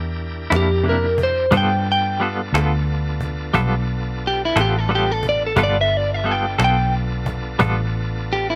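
A slow blues rolls along at 59 BPM in 12/8 with a straight feel, carrying a rollicking, swaggering mood through this short passage cut from a longer piece. A woody cajon with faint snares keeps time beneath a dark, foam-muted vintage fingered electric bass that sits round and punchy up front. A semi-hollow electric guitar adds clean, scooped, hollow-body accompaniment with a tremolo effect from 0.5 seconds, while a bright tonewheel organ holds full, shouting chords through a slow rotary speaker and light overdrive. Over them, an electric guitar at the edge of break-up carries the melody from 0.6 seconds, picked and compressed with a slightly broken-up edge. The harmony moves from C9 to G9, and the sound is dry and close, captured outdoors with little reverb.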